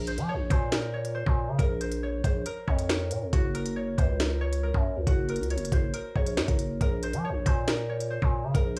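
A dry, gritty recording with a cassette-tape character and studio reverb frames this dark, menacing drill hip hop excerpt at 138 BPM in a half-time feel in Bb minor, where a fingerpicked concert harp rings out the melody over an up-front, growling, saturated 808-style bass and an electronic drum kit that enters at 0.1 s with a knocking kick, sharp snare and crisp hats.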